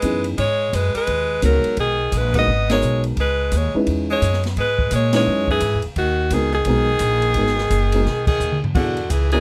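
Smoky and cool, this short excerpt of small-group swing and bop moves at a brisk 172 BPM in 4/4 with a light swing feel, set in G# minor. A bright, close-miked alto saxophone leads the melody up front with vibrato and scooped notes, while an edgy, punchy tenor saxophone adds a forceful second line below it, also scooping into its notes. A dark, boxy upright piano supplies mellow, short-sustained accompaniment, and a woody, thumpy upright bass played pizzicato on gut strings sits prominently in the mix. An open acoustic drum kit with a medium-tuned snare and a boomy kick works across ride, hi-hat, crash and toms, and the whole band hits accents at 2.6, 5.1 and 8.2 seconds before a brief drum fill. The harmony moves from G#m7 to C#m7 and back, turning to E7 at the close, and the dry, detailed recording places every instrument close at hand.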